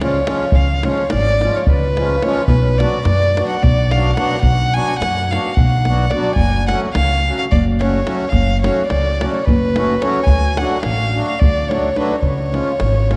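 A dark production set in a wet concert hall, with about 2.5 seconds of reverb, frames this bittersweet, virtuosic Balkan wedding-band excerpt, moving at 215 BPM in eighths through a straight 7/8 in C# phrygian dominant. Up front, a single violin carries the melody with light vibrato, a soft attack and an airy sul tasto bow, while the reedy accordion supplies a slowly beating accompaniment and the woody, thumpy upright bass is plucked on gut strings. A tight, dry davul keeps time in the background as the harmony passes from C# through Bm, F#m and D before settling on C# again at 12.2 seconds.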